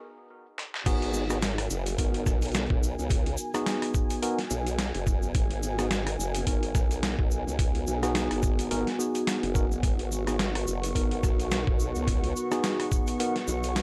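A thumpy, pitched-down electronic kick sits up front in this funky, playful glitch hop excerpt at 107 BPM in G# minor, joined by a saturated, detuned formant-sweep wobble bass that wobbles over a G#m7 chord from the drop at 0.9 seconds. A compressed boom bap sampler-style kit with a medium-tuned snare, crash, hi-hat and rim click opens with a fill at 0.6 seconds, while a grainy, bright egg shaker ticks along in a swung 16th feel. A clean tine electric piano plays stabs through a combo amp with tape echo and sidechain pumping, and from 1.7 seconds a deep, moody analog pad with slow attack and chorus holds sustained chords, all in a dry, rough-edged hardware sound with digital ambience.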